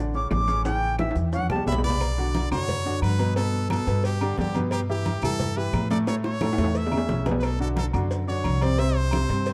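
Festive and danceable, this fragment of a salsa tune moves at a brisk 177 BPM in straight 4/4, with a dark, lightly reverberant production. A crisp, airy silver concert flute opens with a short bright solo that ends at 2.0 seconds, and a brilliant, punchy trumpet with vibrato takes over the melody from 1.7 seconds in a forceful pop style. Underneath, a clear but worn concert grand piano supplies accompaniment with deep bass and short sustain, while an up-front pizzicato upright bass with gut strings sounds woody and thumpy. The percussion is layered: thick-skinned congas and ringing metal-shell timbales with agogo bells sit in the background, round low-tuned bongos with cowbell and dry woody claves stay very quiet, and grainy, mellow maracas are barely audible. Drum fills punctuate the groove, one arriving at 6.1 seconds, as the harmony moves through Bm, Gadd9, Em/G, A and Bm before landing on C.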